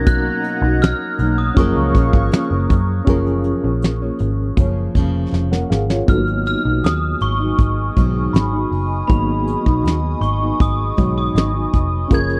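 A dry, close 1970s-style studio sound frames this wistful, hazy bedroom-pop excerpt, where a mellow, bell-like glockenspiel played with rubber mallets carries the melody through analog chorus and tape echo over thumb-plucked nylon-string guitar, a reedy, worn electric piano with fast tremolo and cassette tape coloring, a faint swirling phased pad, a round, foam-muted picked bass and an up-front brush kit with a fat snare and punchy kick that plays a fill from 5.3 to 6.1 seconds.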